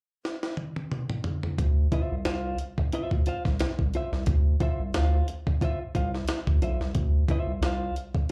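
A gritty, pitched-up breakbeat kit with a thumpy kick and high-tuned snare opens this sly, hypnotic funk excerpt, playing a fill on its own from 0.2 seconds over a swung sixteenth-note feel. At 1.6 seconds a round, deep, dark analog bass enters with sustained notes over a Dm9 chord. A clean, fingered, compressed electric guitar with slapback echo joins at 1.9 seconds, and the whole performance carries the club reverb of a live gig heard through the venue's PA.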